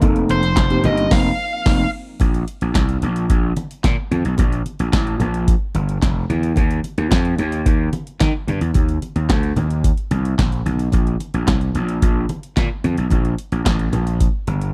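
A straight 4/4 groove at 110 BPM drives this smooth, danceable early-eighties boogie funk excerpt: an electro analog drum machine with a deep kick, punchy snare and metallic hats runs beneath a growly, overdriven slap bass and very quiet, low-tuned congas, while a worn, slightly out-of-tune tine electric piano, a bold, brassy sawtooth pad and a dark, nasal wah guitar with slapback echo (entering at 0.3 s) fill the opening section, which carries a band accent from 1.1 s, before dropping out by 2.2 s, leaving the dry, close-sounding rhythm section to carry the rest.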